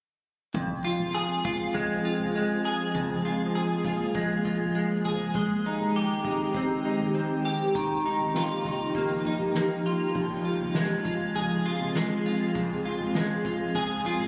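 Hazy and haunting, this dream pop passage in F minor moves at 100 BPM, with a bright, twangy clean electric guitar playing picked arpeggios up front through analog chorus and tape echo from 0.5 seconds, joined at 1.2 seconds by an ethereal, airy pad holding detuned sustained chords with a slow attack and ensemble chorus. A soft-mallet drum kit sits low in the mix, its boomy kick, fat snare, toms and dark crash cymbals struck with mallets. The harmony drifts from Fm through Abmaj7 and Ebadd9 before returning to Fm at 10.2 seconds, all bathed in a huge ambient reverb and the compressed, roomy character of a phone recording, cut from a longer piece.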